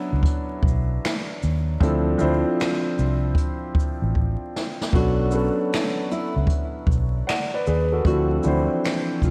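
Lo-fi hip hop at 77 BPM with a swung 16th feel, this hazy, nostalgic excerpt opens on a woody upright piano with long sustain and cassette tape character, joined almost at once by a dark, round, foam-muted fingered electric bass and a roomy jazz brush kit of boomy kick, snare, hi-hat, shaker and finger snaps with 12-bit sampler grit, moving between Bm9 and Dm9 with a drum fill at 4.2 seconds before a fingerpicked nylon-string guitar melody with finger squeak enters at 5.0 seconds through diffuse ambient delay, all in a dreamy mix soaked in lush hall reverb and vinyl crackle.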